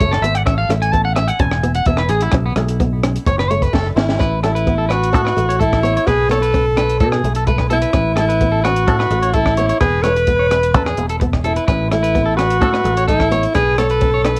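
A straight 4/4 groove from a compact cocktail drum kit drives this joyful, carefree highlife guitar band piece, cut from a longer performance; the kit sounds dark and smooth, with a high-tuned snare, punchy kick, hi-hat and rim click. A fingered electric bass sits up front with a round, amped tone. A twangy electric guitar at the edge of break-up plays arpeggios through analog delay, while a fingerpicked flamenco guitar, finger squeaks and all, accompanies softly in the background. The opening features a clean electric guitar solo, rounded off by a drum fill that leads into the second section at 4.2 seconds. A bright alto saxophone enters at 4.0 seconds and carries the melody up front with pop-style vibrato, over a home cassette recording with light reverb that lends the drums, guitars and saxophone a homespun tape grain.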